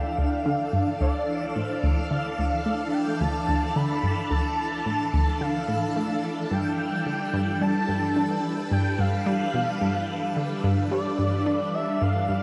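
A straight 4/4 pulse at 109 BPM carries this cosmic, expansive piece of ambient, sequencer-driven space music in D dorian, moving from Dm to G7 at 6.5 seconds, where a round, detuned analog pluck riff with chorus and tape echo sits up front alongside a filter sweep on the synth arpeggio, a swirling, vintage phased string machine holds bright sustained chords through ensemble chorus and shimmer reverb, a smooth, expressive portamento lead with vibrato sings a mellow melody colored by cassette tape and tape echo, and a twinkling, sparkling granular texture glints throughout, all within a dark production washed in an 8.2-second ambient reverb across this 12.4-second cut from a longer work.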